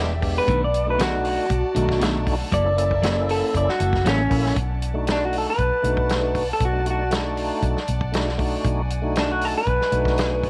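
A laid-back, swaggering excerpt of straight-eighth soul blues at 118 BPM opens on a dark, slightly broken-up lead guitar through a small old amp, a round, foam-muted fingered bass, a fat tonewheel organ with key click, slow rotary speaker, overdrive and chorus vibrato, and soft, floating chamber strings holding chords in the background. A compressed, picked clean electric guitar adds stabs with tape echo until 4.2 s, while a dry, tight soul drum kit with a rolled-off top enters at 0.2 s. The changes move over B7#9 and F#7#9 in a lightly reverberant studio room.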